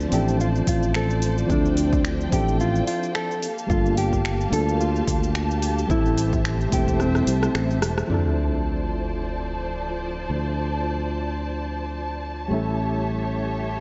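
Sunset chillout in D minor at 109 BPM with a 16th-note swing, warm and wistful: soft, round electric-piano-like synth keys with chorus, tremolo and delay sit in the background beside lush bowed strings and a growly, up-front fretless bass, while a dark, clean electric guitar carries the delayed melody and a punchy, overdriven electronic kick joins metallic hats, cabasa, snaps and rim clicks from a filtered deep house kit until a drum fill and band accent give way at 8.1 seconds to a sub drop under the sustained chords of this dark, softly reverberant excerpt from a longer piece.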